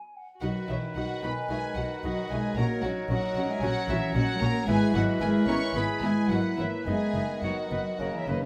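Spirited and lively, this brief excerpt of a quick classical-period orchestral movement moves with uneven, rubato beats as a pure, floating violin section carries the melody over a second violin line, with an accompanying viola section and a mellow French horn section holding sustained chords in the background, and a dark, woody cello section and an up-front double bass section anchoring the bass. A hollow, distant flute section opens alone before the others join at 0.4 seconds. A clear oboe and a clear bassoon add second-line and accompaniment colour, a warm clarinet enters at 1.5 seconds, and a moderate stone-room reverb gives the ensemble its space.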